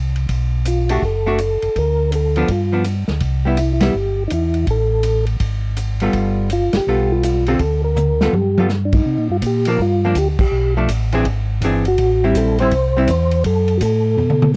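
Swung eighths drive this bluesy, greasy soul jazz organ trio fragment, with a round, dark tonewheel organ bass through a slow rotary speaker carrying the low end from the start and a distant, roomy drum kit with dark cymbals and a tight kick entering at 0.2 seconds. A soft, flute-like tonewheel organ with percussive attack, chorus vibrato and slapback echo carries the melody, while an up-front, hollow-body archtop guitar adds clean, picked accompaniment until 13.1 seconds. Band accents punctuate the groove, a drum fill leads into a new section at 9.1 seconds, and the dry sound keeps the whole trio intimate.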